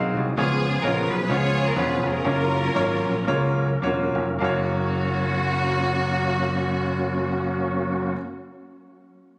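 Captured on a phone in a small room with light reverb, this soulful, jubilant uptempo gospel clip eases its pace between 0.4 and 4.4 seconds as a lush, bowed string section carries the melody over an intimate baby grand piano with audible action noise, a reedy tonewheel organ with key click and fast rotary speaker holding chords in the background, and a growly fingered electric bass.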